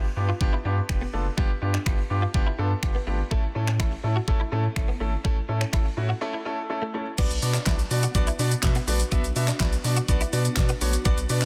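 Bittersweet and confident, this dance-pop excerpt moves in a straight four-four, with a clear baby grand piano and a round, deep analog bass both pumping under sidechain while a clean, direct-recorded electric guitar riff sits in the background with ensemble chorus. From 0.4 seconds a layered, up-front pop drum kit drives it with a knocking kick, a fat snare given soft clipping, hi-hat, shaker, handclaps, finger snaps and crash, all overdriven, and after a brief break at 6.2 seconds the harmony settles onto B minor. At 8.1 seconds a very quiet, ethereal pad with slow attack, phaser and chorus enters with sustained chords under light reverb in a dense, heavily limited master.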